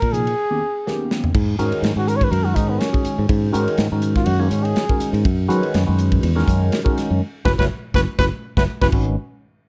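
Electric jazz fusion with a slick, driving swing, caught mid-piece: after a brief break at 0.4 seconds and a drum fill, a dark, breathy trumpet with light vibrato takes an up-front jazz solo from 1.3 seconds over sus chords. Growly fingered electric bass and a clean tine electric piano with phaser sit close beside it, while the polished studio drum kit drives with medium-tuned snare, cymbals and toms. A band accent from 7.2 seconds closes on G# minor, all set in light reverb and a dark, warm production.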